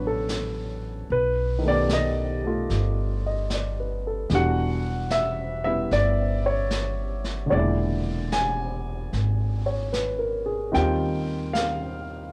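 An upright piano and a pizzicato upright bass open this short, intimate jazz ballad together, and a brushed drum kit joins at 0.3 seconds in a relaxed, swung 4/4. The piano sits up front as the accompanying voice, its polished, present tone carrying a short sustain and a soft cassette-tape coloring. The bass, also close and prominent, has a woody, thumpy character from its steel strings and anchors the low end. Further back, the drums sound distant and roomy, with brushes on a medium-tuned snare and hi-hat that also carry the tape's character. The romantic harmony moves from Dmaj9 through Baug7, Em9 and E7#11 to a closing Eb69, all captured in a snug booth ambience with the homespun feel of a cassette recording cut from a longer performance.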